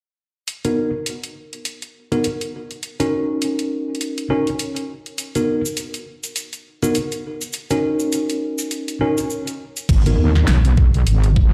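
This funky, gritty glitch hop excerpt opens at 0.5 s with an overdriven pop drum kit of crash cymbal, hi-hat and a fat snare, joined almost at once by worn, slightly out-of-tune electric piano stabs sitting up front with sidechain pumping, a low-pass filter and tape echo. At 102 BPM in 4/4 with a 58% swing on the sixteenths, the groove moves through Bmaj7, D#m7 and back to Bmaj7, then F#6/C#, with the piano voiced between B3 and A#4. A grainy, bright cabasa slips in at 5.2 s, compressed and saturated and kept in the background. At 9.9 s the music shifts to a G#m7 section where a heavy, detuned wobble bass with chorus drops in up front, ranging from G#1 to D#2, alongside a knocking, overdriven electronic kick. A moderate plate reverb and the boom of a big system in a bare room give the whole mix a large, roomy character, and the tuning sits slightly flat at A4 = 436 Hz.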